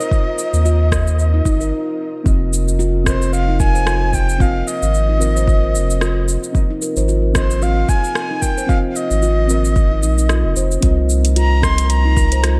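This excerpt of organic downtempo has a light reverb and a digital ambience, with a meditative, warm mood and a gentle swing in its 4/4 groove. A breathy, flute-like synth lead carries the melody throughout, soft and sustained with vibrato, chorus and analog delay. Beneath it, a steel tongue drum plays round, ringing arpeggios with a vintage 12-bit sampler grit and its own delay, while an overdriven afro-pop kit of metallic hats, rim click and shaker joins a deep, overdriven electronic kick. A cloudy, blurred granular pad sits in the background with its built-in reverb and sidechain pumping, holding a Cm7 chord only until 1.7 seconds, just before a brief stop. Muted, intimate felt-like synth keys with a dark, decaying tone enter at 2.2 seconds to fill out the accompaniment, and from 2.3 seconds the harmony moves to Fm7. A round sine sub bass, entering at 0.5 seconds, stays up front and pumps with the sidechain through to the end, as the music returns to Cm7.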